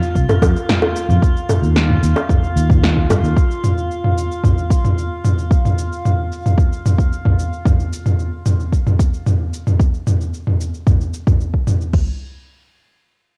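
A straight 4/4 groove at 112 BPM drives this blissful sunset chillout excerpt, built from two layered, overdriven electronic deep house kits, one bringing a deep kick, crash and toms, the other a punchy snare, cabasa and toms, both up front with a large-room sheen and cassette grit. At the start, tight, high-tuned acoustic bongos played with soft hands and a growly, amped fingered electric bass join in; the bongos stop at 3.2 s and the bass at 3.3 s. Alongside them, a calm, glassy sine texture of drifting overtones sustains with chorus and reverb until 7.7 s, after which the drums carry on alone in a lightly reverberant, home-taped sound that feels warm.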